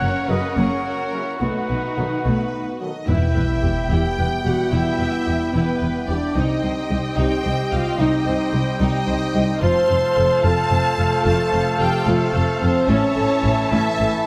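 This cinematic, epic orchestral film-score excerpt in a slow 6/8 at 73 BPM opens with a full orchestra already sounding: lush violin sections carry a vibrato-rich, expressive melody over a second, focused violin line, while close, soft-attacked violas fill the middle. Dark, woody cellos and smooth double basses hold the bass, and a mellow, roomy woodwind section sustains chords. A vintage-toned solo trumpet punches out stabs until 2.8 seconds, as distant French horns and a bright trombone section in the background settle into sustained chords. At 3.1 seconds a heroic impact lands, with timpani struck by medium mallets on calf heads and a huge sub drop beneath. Across the excerpt the harmony moves relentlessly through F#, B7, Em, Cm, F and A under a moderate scoring-stage reverb that gives the ensemble a spacious hall sound.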